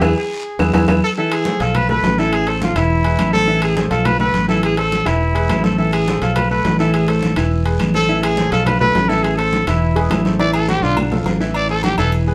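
This fiery, passionate salsa excerpt opens with a band accent and a drum fill as a warm trumpet takes the melody, its light vibrato and scooped notes sounding distant and roomy yet kept up front. Beneath it, a brilliant grand piano with long sustain and audible action noise comps through a cycle of Am, Fmaj7#11 and E, while a dark, round fingered electric bass sits prominently in the mix. The percussion bed blends hard-handed congas with a thin, vintage skin sound, ringing metal-shell timbales and agogo bells heard close and dry, woody claves set deep in a large room, and a raspy guiro, all but the timbales and bells kept in the background. A soft, shimmering steel pan slips in briefly at 10.0 seconds, and at 10.4 seconds a growling, gritty trumpet bursts in with a punchy solo over Am and Bm7b5. The band plays live in one room, wrapped in a wet studio reverb.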